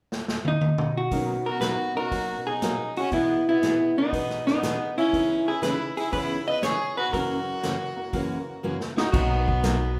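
Western swing country at 120 BPM in B major, playful and swinging, this excerpt opens with a drum fill on a roomy, dark-cymballed kit before a clean, compressed hollow-body jazz guitar carries the melody over a jangly, detuned upright piano, a picked steel-string acoustic guitar with finger squeak, and a nasal, airy-bowed fiddle on the second line, moving through Bmaj7, Emaj7/B, C#m7 and F#7 in a live-sounding room with lush reverb, until a woody, thumpy upright bass arrives at 9.1 seconds on the return to Bmaj7.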